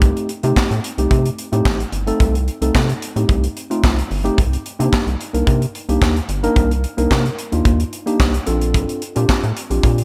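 A lightly reverberant studio sound frames this short cut of early-eighties boogie funk, a funky, late-night groove at 110 BPM in a straight 4/4, set in C dorian. An up-front, airy, polished acoustic drum kit with a punchy kick, medium-tuned snare, hi-hat and handclaps drives things, while a rubbery, hollow square-wave bass with a resonant filter pluck bounces through the low end. A mellow tine electric piano voices the chords, moving from a rootless F9 to Cm7 at 4.4 seconds and Bbmaj9 at 8.5 seconds.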